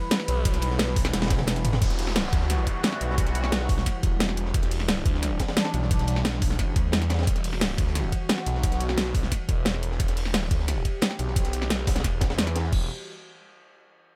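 A nasal, detuned sawtooth pad with chorus and sidechain pumping opens this dark, aggressive cut of technical drum and bass at 176 BPM in E minor. It is joined almost at once by an up-front dubstep kit with a huge snare and bright hats, a gritty, high-pass-filtered breakbeat kit in the background, a knocking electronic kick, and a swirling, thick detuned saw bass with phaser and tube saturation. A drum fill at 1.1 seconds leads into a passage from 1.8 seconds where the harmony moves to Emadd9, a filter sweep runs over the pad and a downlifter sits in the background.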